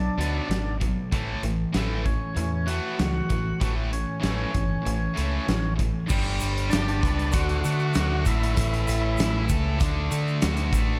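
A round, punchy, up-front dub bass drives this gritty, brooding classic rock fragment at 97 BPM in 4/4 over Bm and A6, shifting at 6.1 s to G, D and A, while a thick overdriven tonewheel organ with slow rotary speaker carries the melody, a tight distorted guitar and a raw, brilliant-toned garage guitar in the background play riffs, a dark, smooth big rock drum kit with punchy kick supplies crash, hi-hat and snare, and a grainy egg shaker joins at 6.1 s, all in a small room.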